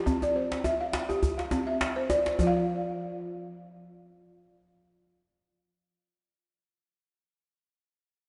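A lightly swung sixteenth-note pulse in four drives this short cut from a longer piece of joyful West African traditional music for xylophone and drum. The balafon plays arpeggios across its range for the full 6.2 seconds, its woody, buzzing tone struck with soft rubber mallets and sitting up front with a dry, airy character. A medium-tuned djembe with metal rattles joins at 0.1 seconds, played with hard hands in a live room, and stays close in the mix until it stops at 2.7 seconds. The harmony rests on a C chord at first, then the chords fall away from 2.4 seconds as a second passage begins. The overall mix is dreamy and soaked in a lush hall reverb, with its top end gently rolled off.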